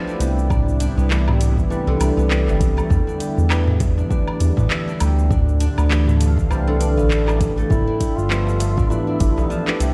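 This excerpt of organic downtempo opens with a tine electric piano, a detuned analog pad with chorus and a bright, silvery guzheng playing arpeggios with tape echo, while a felt-mallet quartz singing bowl rings faintly beneath them until 7.7 seconds. The mood is warm and peaceful, set at 100 BPM in 4/4 with a 16th-note swing in G mixolydian, moving through Cmaj7, Em7 and Dm7 before returning to G13. An overdriven afro-pop kit with metallic hats, handclaps, shaker and woodblock joins almost at once, alongside a very quiet, crisp darbuka struck with hard hands and an overdriven electronic kick that gives a deep thump. A dark, up-front synth bass with sawtooth and ring-modulated tones anchors the low end, while the electric piano and pad sit in the background, both breathing with sidechain pumping. At 7.7 seconds a mellow duduk enters as a solo folk-style melody with vibrato and tape echo. 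The whole mix carries a small-room ambience and stony reverb, as if played through a large sound system in a bare space.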